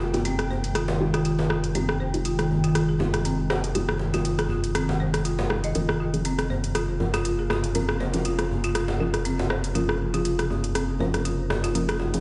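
An airy, ethereal pad with ensemble chorus and phaser opens this driving, hypnotic afro house excerpt at 120 BPM in F minor, joined at once by woody marimba arpeggios through dub echo, soft, nasal chord stabs in the background, and a round, up-front analog bass holding F1 over Fm9 and then Bbm/F from 5.8 seconds. From 0.1 seconds an electronic afro-pop kit with overdriven, metallic hi-hats and rim clicks sets a swung groove alongside a deep, distant djembe with metal rattles. The whole mix sounds as if played on a big sound system in a bare stone room, its top end dulled and softly reverberant.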